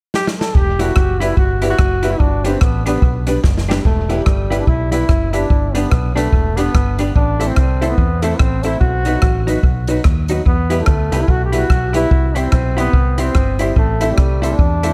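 A clear, distant trombone carries the solo melody with analog delay through this energetic, driving ska excerpt in E minor at 145 BPM, swung on the eighths, entering at 0.2 seconds during a drum fill that opens the kit. The up-front big-band drums pair a punchy kick and medium-tuned snare with hi-hat and rim click, while a round, foam-muted fingered electric bass lays down the low end from 0.5 seconds. A dark, compressed hollow-body jazz guitar sits in the background, and a worn, woody, slightly detuned upright piano adds delayed stabs over chords moving from Em and G through Am, B and C, all in light reverb and studio ambience.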